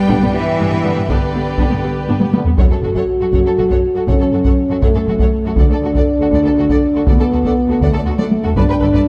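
Set in a moderate concert hall with a 2.1-second reverb tail, this excerpt from a cinematic, epic orchestral film score moves at 80 BPM in 6/8 in F# Phrygian, relentless in mood, with up-front taiko drums struck with heavy sticks and a tight, mellow French horn section holding sustained chords. In the background, lush bowed strings carry the harmony: violins with vibrato play a smooth melody over a second violin line, violas add expressive portamento, distant rich cellos and dark double basses form the bass, and mellow woodwind chords and a very quiet, clear trombone section drop out by 2.3 and 2.4 seconds respectively. The chords move from G to F#m and D before returning to G, with taiko fills arriving at 2.2 and 8.2 seconds.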